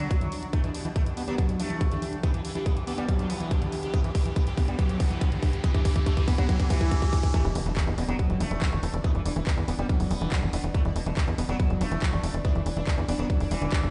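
Psychedelic trance with a psychedelic, driving mood, cut from a longer piece: a buzzing, shimmering sitar melody with phaser and digital delay sits over a pulsing, detuned gated pad of sustained chords, while a squelchy, screaming distorted acid riff with chorus and delay cuts through, all three pumping against an up-front, tight electronic kick and a layered big-room kit of handclaps and hi-hat. A drum fill entering at 0.5 s and a background riser entering at 1.9 s build until a drop at 7.3 s, marked by an impact and, a moment later, the arrival of a punchy, nasal sequencer bass with a filter pluck. The mix carries light reverb and the dull, stony echo of a big sound system playing in a bare room.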